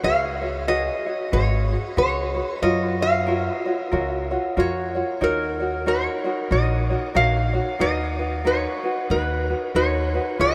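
From the first moment at 0.0 s, a metal-body resonator slide guitar, a tenor ukulele and an upright bass sound together in this sunny, dreamy Hawaiian excerpt, cut from a longer piece. The resonator carries the melody up front, its bright, metallic, nasal slide tone played with fingerpicks and trailed by a slapback echo. The fingerpicked tenor ukulele gives light, warm accompaniment, while the pizzicato upright bass on gut strings supplies a woody, dark, thumpy low end. The swung 4/4 feel moves through C#7sus4, F#maj7, D#m7 and Bmaj9/D#. Everything sits in a vast, echoing space, bathed in a huge ambient reverb that lingers until the excerpt ends at 10.5 s.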